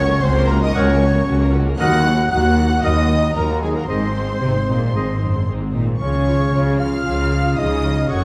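Adventurous and heroic, this cinematic passage in Db major moves at 114 BPM in a straight 4/4, cut from a longer piece and moving through Gb/Db, Ebm, Ab and Db chords. A lush violin section carries the vibrato melody up high, with a hollow flute and a distant second violin section on a line beneath it, joined by a bright oboe at 0.7 seconds and a faint, roomy clarinet at 0.8 seconds, while violas accompany, a mellow French horn section holds soft sustained chords, a close-miked trumpet adds stabs and a very quiet fingerpicked harp ripples arpeggios. Cellos and an up-front double bass section anchor the bass, all set in a moderate scoring stage reverb with a dark production.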